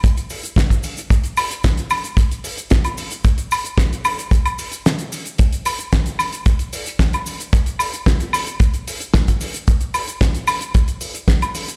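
Cosmic and sleek, this nu-disco excerpt is a straight 4/4 groove carried by a damped 70s drum kit, whose fat snare, hi-hat, shaker and woodblock sit dry and up front alongside a tight kick. A very quiet cabasa adds a compressed, saturated texture with a tube-shaker and group-handclap character underneath. The kick briefly drops out between 4.9 and 5.4 seconds, and the whole mix sounds as if played through a big sound system in a bare room, with light studio reverb and stony room ambience.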